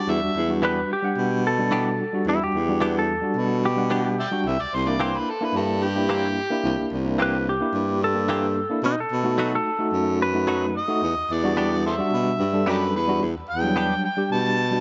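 A gritty, amplified harmonica with slapback echo and a barky, overdriven tine electric piano pulsing with fast tremolo open this brooding, smoky blues in E minor at 110 BPM, over a lightly swung 4/4 feel. A breathy, whispered baritone saxophone carries the bass line with scooped notes, while from 0.6 seconds a twangy slide lap steel sings the melody until 10.7 seconds, and a bright, direct-recorded clean electric guitar with subtle chorus adds stabs through the Em7, C7 and B7 changes. The harmonica returns in short bursts and takes a brief solo from 13.2 seconds, all set in a small, lightly reverberant room with a mellow top end.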